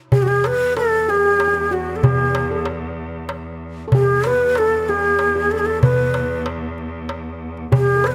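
Close, detailed microphones and light reverb give this stately fragment of an Arabic maqam ensemble an intimate clarity, moving at 95 BPM in a straight 3/4 in E maqam rast. Up front, a breathy end-blown ney carries the melody with vibrato alongside a crisp, small metal-shell darbuka. In the background, a mellow steel pan played with soft rubber sticks shimmers on a second line, while a distant bowed cello holds a bright, focused drone on E2, the four parts sounding together from 0.1 to 8.1 seconds.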